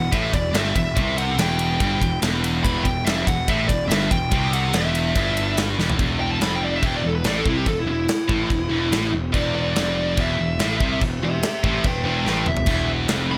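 Epic and aggressive, this heavy metal excerpt drives along at 143 BPM in E minor, with a dark, high-gain lead guitar carrying the melody throughout and breaking into a solo at 6.0 seconds over two picked, bright rhythm guitars (one scooped) sitting in the background, a growly fuzz bass and a punchy, airy rock drum kit with bright cymbals up front. A majestic full pipe organ holds very quiet sustained chords until 6.0 seconds and returns briefly at 12.7 seconds, just after a drum fill. The sound is dry and polished, cut from a longer piece.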